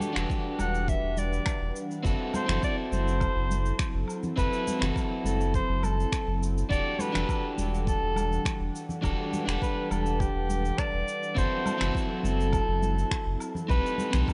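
A mellow, vintage-toned soprano saxophone with light vibrato carries the melody up front from 0.6 seconds, its tape echo trailing the line through this smooth sunset chillout excerpt in E minor at 103 BPM, tuned to A4 = 435 Hz. Beneath it, a picked electric guitar at the edge of break-up plays tape-echoed accompaniment, and an airy, breathy pad holds chorused chords. A round sine sub bass with tube saturation sits up front beside a deep, layered electronic kick, while shaker, finger snaps and woodblock with brushes and soft-handed congas in the background fill out a warm groove in light studio reverb, over chords moving between Em11 and F#m7b5 before a closing B7b9b13.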